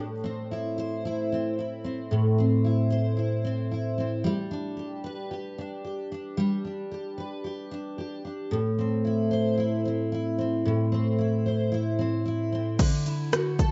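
Acoustic pop at 112 BPM in a straight 4/4, heartfelt and easy-going in mood, cut from a longer piece. A picked, double-tracked steel-string jumbo acoustic guitar carries the accompaniment up front, its full-bodied tone moving from Am to G and back to Am. The guitar plays alone until 12.8 seconds, when a punchy, overdriven analog drum machine enters with a punchy kick, rim click, shaker and crash cymbal, arriving on a Dadd9 chord. Both parts sit in a moderate, lush hall reverb with a 2.0-second decay. The overall sound is a rough home demo mix with a dull, rolled-off top end.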